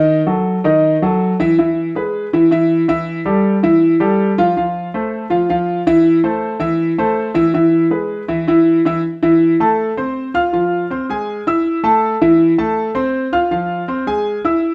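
Danceable and passionate, this Latin fragment is a solo concert grand piano performance in a straight four-beat metre. The piano sounds clear and natural, with a deep bass and long sustain, sitting up front even as a wet studio reverb places the listener further back in the room. The opening passage moves from a diminished chord through E, Fmaj7 and Am/E harmonies before settling back toward E. At 9.0 seconds a new section begins, cycling through a tighter loop of A5, F/A, F5 and E. The whole fragment runs to 14.7 seconds, lifted from a longer piece.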